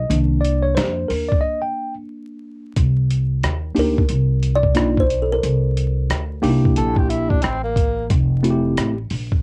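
This mellow, smoky jazz-hop piece opens with a worn, slightly out-of-tune tine electric piano over a woody, plucked upright bass, with a sampler-style drum kit joining almost at once. The piano takes a brief solo turn with a break in the opening bars, its clean tone softened by cassette tape. The drums carry their own tape grit: a thumpy kick, a medium-tuned snare, rim clicks and hi-hat, compressed and re-recorded in a small room. At 90 BPM in 4/4 with a lazy swing on the sixteenths, the music sits in C dorian and moves from Cm7 to C7 and on to Fmaj7. A hollow, thumb-plucked kalimba carries a short melody from 3.8 seconds, and a breathy, whispered tenor saxophone adds a second line of scooped, vibrato-laced notes from 6.8 seconds. The sound is dry and close, with a home-cassette character and a bed of vinyl crackle, and this fragment is cut from a longer piece.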